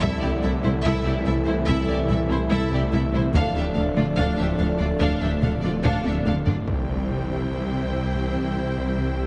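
This cinematic hybrid of orchestral and electronic film scoring moves at 72 BPM in D minor, with a futuristic, vast mood, and is cut from a longer piece. A clear, intense violin section carries the melody with lush vibrato from a distance, while a second, richer violin line and a focused viola section fill in the background. Underneath, a mellow French horn section and a very quiet trombone section hold sustained chords until 6.3 seconds, joined by a soft, evolving organ-like pad with a chorus shimmer. The low end stacks a thick, beating, menacing detuned saw bass, a smooth gliding synth riff, a clear chamber cello section and a soft-attacked double bass section with portamento, while a taiko ensemble played with heavy sticks leads into a drum fill before a huge, bright impact lands at 6.7 seconds on a C chord. Moderate scoring-stage reverb gives the ensemble space, and heavy multiband compression lends the whole mix a dense, radio-like sound.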